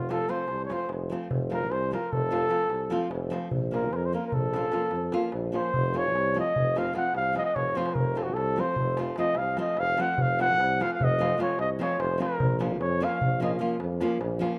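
Fiery yet bittersweet, this short cut from a longer Balkan folk piece has the energy of a Balkan wedding band, driving at 297 BPM in eighths through an asymmetric 11/8 metre with a straight feel in F phrygian dominant. A dark trumpet with light vibrato and a smooth top sits up front in a classical style, carrying a solo across the whole passage while holding the second line between F4 and Gb5. Beneath it, a tuba supplies the bass from F1 to F2 with vibrato and a roomy, distant quality, while a fingerpicked nylon-string guitar adds deep classical accompaniment, its finger squeaks audible as it sits up front. A metal-shell darbuka played with soft hands gives crisp, live-room percussion and slips in a brief fill at 7.7 seconds. The harmony moves between F and Bbm, and the whole is bathed in a moderate, lush hall reverb over a rough home-demo mix.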